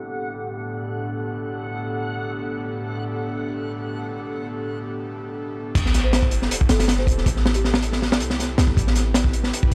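Drum and bass with a jungle edge at 159 BPM in A dorian, this dark, frenetic excerpt opens on an airy, breathy pad with chorus under a filter sweep, alongside a reversed, dreamy swelling texture with its own reverb that lasts until 5.0 seconds. At 5.8 seconds the drop lands with an impact: a crunchy breakbeat kit with a punchy kick, high-tuned snare and dark cymbals sits up front, a deep, boomy 808-style bass enters, and a very quiet electronic sub drop sounds beneath. A woody soft-mallet marimba with dub echo drifts in the background of a low-passed mix with light studio ambience.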